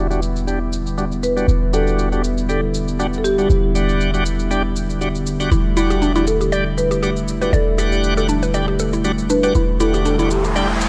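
Set to a 4/4 pulse at 119 BPM with a light 16th-note swing, this spiritual, hypnotic afro house passage in E minor is cut from a longer piece and rests on a single Em7 chord throughout. A deep, boomy 808-style bass sits up front on a low E, while an electronic, layered cabasa ticks along beneath, its drum kit softened by low-pass filtering and a touch of studio ambience. A smooth, detuned sawtooth pad holds sustained chords with chorus, and a marimba played with soft mallets carries a woody, round melody bathed in dub echo. A bright, shouting tonewheel organ punches in with lightly overdriven stabs through a slow rotary speaker, dub echo and a filter sweep that runs the length of the passage. At 5.5 seconds a mallet-like FM pluck joins with percussive arpeggios treated with chorus, phaser and dub echo, and an electronic riser enters at 10.1 seconds, all set in light reverb.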